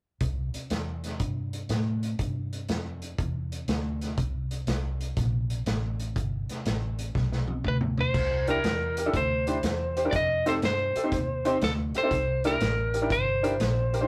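A lightly driven lead guitar, slightly broken-up and picked, steps up front at 7.7 seconds over a swaggering, rollicking electric blues shuffle at 121 BPM in C mixolydian, swung in 4/4 and cut from a longer piece. A foam-muted, round electric bass and a vintage drum kit with a punchy kick, dark cymbals and a pumping room sound carry the groove from the start, with a drum fill leading into the second section, where a brilliant, woody upright piano joins at 8.5 seconds. Chords move from C7 and G to C9 and F7sus2, and the whole take has the rough feel of a small rehearsal room with moderate reverb.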